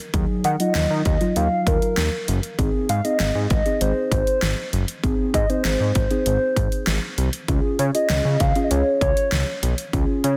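Melancholic and cool, this synth-pop passage, cut from a longer piece, moves from Ebmadd9 to Ab and then to Db at 7.5 seconds over a punchy, layered electronic pop kit with a fat snare and bright hats, and a thick, detuned sawtooth analog bass sitting up front. Muted, felt-like synth keys with a vintage warble and a filter sweep add intimate, dark accompaniment under chorus. From 0.4 seconds a hollow, woody clarinet-like synth lead carries the melody with vibrato and chorus, all set in a moderate concert hall reverb and a dense, heavily limited modern master.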